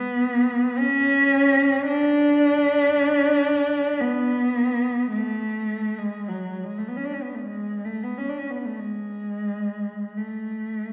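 A single bowed cello sings a lyrical, nostalgic line in a free-flowing triple metre, its rich tone shaped by vibrato, soft attacks and gliding portamento. The player sits up front, yet the sound carries the wet bloom of a concert hall, as if heard from further back in the room. This brief classical passage, lifted from a longer work, stretches and relaxes its pulse expressively for just under 11 seconds.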